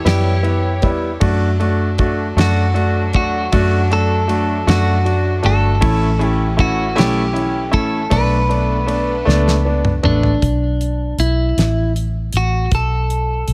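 Lightly reverberant studio ambience frames this dramatic, aching pop ballad in B minor, which moves at a slow 52 BPM in a straight 6/8 and is cut from a longer piece. A clear, polished concert grand piano carries the accompaniment while a distant, reedy string section with gut-string tone and light vibrato holds sustained chords over Em, D, A and Bm7. A compressed clean electric guitar with subtle chorus and delay sings the melody above a round, punchy foam-muted fingered bass and a dry 70s drum kit with a fat snare and dark cymbals. A drum fill from 9.3 seconds leads out of the piano and strings at 10.4 seconds, after which the guitar, bass and drums carry a new section to the end.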